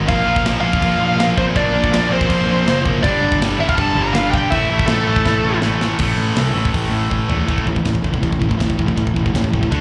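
Two bright, high-gain guitars, one of them set back in the mix and the other carrying a slapback echo, open this dark, aggressive heavy metal excerpt in A phrygian at 162 BPM, joined by a round, fuzzed electric bass up front and a tight acoustic drum kit with a medium-tuned snare. Over chords moving from Bb to G5 and A5, a bluesy overdriven lead guitar carries the melody up front while a second high-gain lead line sits behind it, both with slapback echo, until they drop out at 5.6 s. Drum fills at 5.3 s and 7.1 s mark the shifts between sections, and the whole fragment comes across as a live club gig heard through the venue's PA, with small-room ambience around the band.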